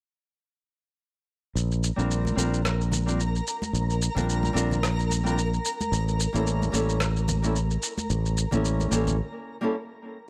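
A dry, gritty hardware recording with a touch of studio reverb carries this sunny, swung sunset chillout fragment, cut from a longer piece. From 1.6 seconds a bright, growly fingered electric bass sits up front under a filter sweep, alongside a compressed, sampler-style electronic shaker and rim click. A small, fingerpicked nylon-string guitar with low-pass filtering and tape echo, a sparkling granular texture with octave-up shimmer and its own reverb, and very quiet, close congas played with hard hands fill in over Bb6 and A7b9 chords, until a break at 9.2 seconds leaves the guitar alone until 9.8 seconds.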